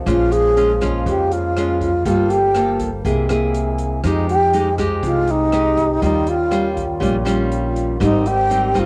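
A breathy alto flute carries the melody up front from 0.1 seconds, its tone full of vibrato and expressive tonguing, over a fingerpicked nylon-string guitar with fresh, full-bodied strings and audible finger squeak. This sophisticated, romantic bossa nova excerpt moves at 121 BPM in a straight 4/4, with a woody pizzicato upright bass, a mellow French horn section holding soft-attack chords in the background, and a quiet small-room drum kit of hi-hat, rim click and boomy kick. The chords drift from Bbm7 through Gm9, Caug7, Fm9 and Eb9 to Abmaj7, and the home cassette recording adds light reverb and a vintage tape character.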